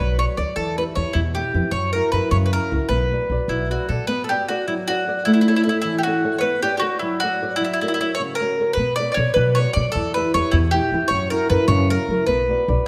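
Romantic and passionate, this short Italian serenade in the folk tradition moves at 103 BPM in a straight 6/8, set in B minor. A bowl-back mandolin carries the melody up front, its picked double strings giving the line a warm edge throughout. Beneath it, a flamenco guitar supplies the accompaniment, thumb-plucked, with the occasional finger squeak audible on its strings. An upright bass, played pizzicato with a woody tone on steel strings, sits up front for the opening 4.0 seconds, drops out, then returns at 8.8 seconds. The harmony circles through Bmadd9, Em, F#7 and Bm, with a brief turn to A and F# in the middle, all bathed in the lingering reverb of a recital hall.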